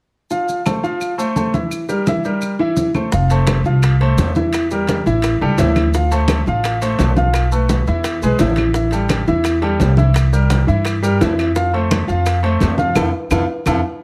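Danceable and joyful, this salsa excerpt opens at 0.3 seconds with a clear, intimate grand piano up front, its short sustain and audible action noise sitting over bright, hard-handed congas with a vintage, band-limited edge and grainy maracas in the background, with woody claves joining softly behind them at 0.7 seconds. At 3.1 seconds a growly, thumpy pizzicato upright bass joins up front, along with tight, high-tuned bongos, and ringing metal-shell timbales follow at 3.3 seconds, sounding distant, as if in a large room, while the chords grow richer with jazzy sevenths. A drum fill and a band accent arrive at 13.0 seconds, all set in a moderate studio reverb.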